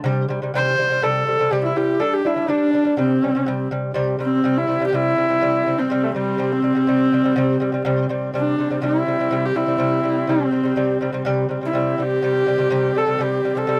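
Proud and galloping, this Mongolian folk excerpt at 123 BPM in 4/4 sets a rich, husky horsehead fiddle melody with light vibrato and portamento up front over delicate fingerpicked lute arpeggios on gut double strings, while a very quiet, reedy bamboo low xiao adds a second line until 3.7 seconds and a second, airy-bowed horsehead fiddle holds a background drone on C4 from 4.0 seconds, set in a dark production with light reverb.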